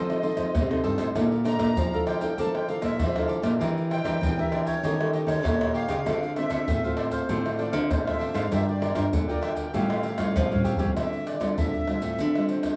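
From the first moment, a reedy, sweet accordion with light tremolo tuning carries the melody over a crisp, bright, picked cavaquinho and a fingerpicked classical nylon-string guitar in this short cut from a longer samba and choro piece. A second nylon-string guitar holds the bass line with a full-bodied tone and audible finger squeak, while maracas, pandeiro, tamborim and a tight surdo, played with soft hands, sit up front. The mood is nostalgic yet lively, with a straight feel in four and harmony that moves through rich chords such as Bbmaj7#11, Em7b5 and A7alt. The cavaquinho drops out at 10.9 seconds, and a drum fill leads into a new section at 11.0 seconds, where the accordion takes a solo over a Dm11 chord. The mix has the rough, intimate quality of a home demo, with small room ambience and light reverb.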